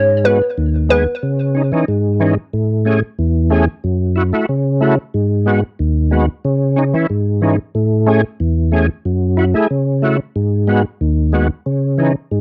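Dancehall with a hypnotic, tough mood, this short cut from a longer piece rides a straight 4/4 groove built on a cycling minor-seventh and add-nine chord loop. An overdriven tonewheel organ carries the accompaniment from 0.0 to 12.4 seconds, sounding full and thick, with chorus vibrato and a slow rotary speaker giving its gritty tone a restless shimmer. A hollow square pluck sits up front for just the opening moment, from 0.0 to 1.1 seconds, a bouncy, detuned voice with a sub octave, a noise layer, a fast attack and a decaying filter pluck, coloured by chorus and tape echo. After that brief figure the organ holds the spotlight, its thick chords cycling steadily through the rest of the passage. The recording is dry and raw, with a hardware, cassette-tape character that adds grime to the close, in-your-face sound.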